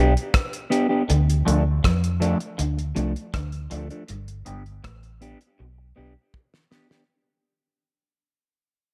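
A round, foam-muted vintage bass sits up front in this serious, hypnotic roots reggae piece, its dark, amped fingered tone carrying the low end. A mellow electric guitar plays clean, fingered accompaniment close by, coloured with phaser and tape echo, while a bright, twangy guitar through a small old amp picks a slightly broken-up riff in the background, thickened by ensemble chorus. The cloth-damped, thuddy drum kit comes in at 0.2 seconds with a fat snare, tight kick, rim click and hi-hat, its rolled-off top and small-room sound keeping it soft-edged yet up front. The harmony moves from G to Dm and back to G. The whole short cut from a longer piece is fading out, with a drum fill arriving at 5.6 seconds, and the bass and riff guitar stop at 6.1 seconds.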